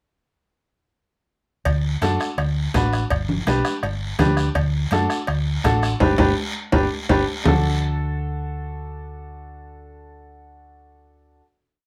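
With a light reverb over the whole piece, this joyful and festive cumbia in D major moves at 166 BPM, as a dark, round hollow-body electric bass plays a cumbia figure and a bright, worn, slightly detuned upright piano sits up front with rhythmic triad chords, while a close, dry bombo, ringing cowbell and timbales, soft-handed high-tuned congas in the background, and a raspy, distant guiro drive the groove from 1.7 seconds until a band accent and drum fill land on a final D chord at 7.5 seconds.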